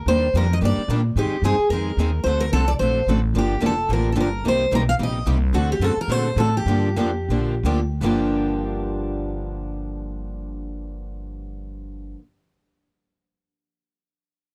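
A dry, close recording with a 1970s studio feel frames this fiery, bittersweet fragment of acoustic string swing in the jazz manouche style, cut from a longer piece. Up front, a bright, full-bodied jumbo steel-string guitar carries the picked melody with finger squeak on fresh strings until 7.6 seconds, beside a woody, thumpy upright bass on gut strings. Two picked parlour guitars supply the accompaniment, one boxy and set in the background, as the music slows from 5.5 to 8.0 seconds before moving into a new section.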